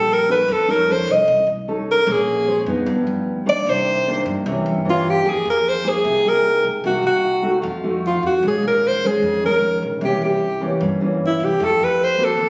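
Smooth and wistful, this bossa nova cut from a longer piece moves at 151 BPM in 4/4, with a breathy, close-miked alto saxophone featured up front playing a jazz solo with vibrato, a warm, thumb-plucked classical nylon-string guitar also up front, and a woody pizzicato upright bass on steel strings beneath, settling into F minor at 5.3 s, all caught on a phone in the room with light studio reverb.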